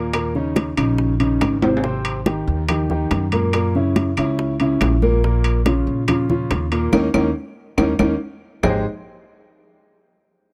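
Afro-Cuban jazz with a sophisticated, lively character, this short cut from a longer piece moves in a straight 4/4 feel. A clear, natural upright piano sits up front in an accompanying role, moving through suspended, major-seventh and minor harmonies, while a dark, thumpy pizzicato upright bass on gut strings stands close beside it. Bright, thin-skinned congas and round, low-tuned bongos, both played with soft hands, sit further back along with woody claves, while ringing metal-shell timbales carry a vintage, band-limited tone. Drum fills arrive at 1.6 seconds and again just before the 8.6-second mark, where a band accent from 6.9 seconds leads into a brief new section. The whole has the dry, close sound of a 1970s-style studio captured in a small room.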